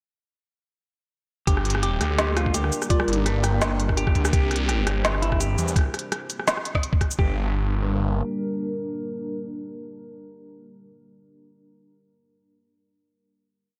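A sparse half-time drum and bass groove at 168 BPM drops in at 1.5 seconds, with a gritty, pitched-down kick up front alongside a woody snare, smooth hats, rim and shaker, while a swirling, thick detuned saw bass with phaser plays chopped phrases in G dorian over Gm and C. A clean, hollow-body electric guitar repeats a 16-step arpeggio through analog delay, a round FM lead adds brief keys-like phrases with tape echo in the background, and a deep, moody pad with chorus pumps beneath. The spacious, dark mix is soaked in lush hall reverb, and the pad sustains the final Gm chord with the bass before lingering until 10.2 seconds.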